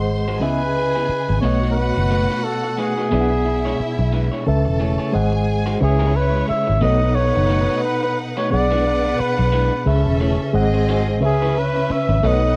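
This dry, close recording has a 1970s studio intimacy, setting a silky, cinematic soul groove at 89 BPM in C# minor with a gentle sixteenth-note swing. A dark, round, foam-muted electric bass sits up front and punchy, while a reedy electric piano with fast tremolo plays mellow accompaniment through its built-in speakers. From 0.4 seconds a flugelhorn carries the melody up front, its tone warm with light vibrato and scooped, pop-style notes. Behind it, a lush bowed string section adds a second line with expressive portamento and a smooth top. Further back, a slightly broken-up, compressed electric guitar picks a riff through a small old amp bathed in spring reverb. The harmony cycles twice through C#m7, B7, E7/B, Amaj7 and G#7 before landing back on C#m7 near the close of this cut from a longer piece.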